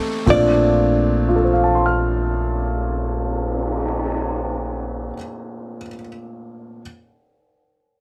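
A warm upright piano opens this short, late-night jazz ballad fragment, its woody tone carrying audible action noise, and it sounds on until 6.8 seconds. At 0.3 seconds the band joins over a Bbmaj9 chord: a dark, clean hollow-body electric guitar takes the melody with a fingered, compressed tone and plate reverb, while a thumpy, woody pizzicato upright bass sits up front. A brush drum kit with dark cymbals and a boomy kick adds soft support, including a cymbal swell and ride cymbal, its top rolled off, before dropping out at 4.1 seconds. The slow 59 BPM pulse in 4/4 carries a gentle swing feel in Bb major, and the mood stays intimate throughout. A moderate studio room surrounds the group, though the overall sound is heavily compressed in the manner of a radio broadcast.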